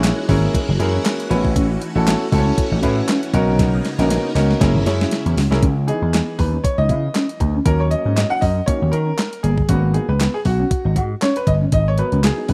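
A punchy, up-front vintage slap bass and an 8-bit drum machine with a thumpy kick, handclaps, hi-hat and a medium-tuned snare drive this danceable, late-night slice of early-eighties boogie funk at 118 BPM in G# minor, swung on the 16ths. A boxy grand piano with audible action noise plays accompaniment over a dark, clean electric guitar riff in the background with lush chorus, while a swirling, sawtooth string machine with ensemble chorus and phaser holds sustained chords until 5.6 s. After a drum fill from 3.6 s, the piano takes an intimate solo over chords moving from C#m9 to G#m9, all in a rough home demo mix with little reverb.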